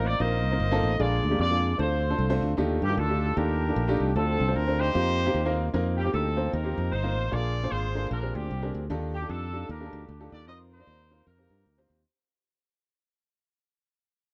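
A clear, up-front horn section carries the melody in this cut from a longer uptempo gospel piece, its light vibrato and vintage, pop-style ensemble voicing setting a soulful, reverent tone. It moves at 152 BPM in 4/4 with a swung eighth-note feel, so the groove lilts rather than marches. A woody upright piano with short sustain fills in the accompaniment beneath it, and a round, punchy fingered electric bass sits low and direct, the most prominent part in the mix. The harmony drifts through suspended dominants, seventh chords and a lush Ebmaj9#11, lending the progression a hopeful, churchy colour. Light reverb gives the trio a modest sense of space, and the music begins to fade out from 5.7 seconds through to the close at 12.1.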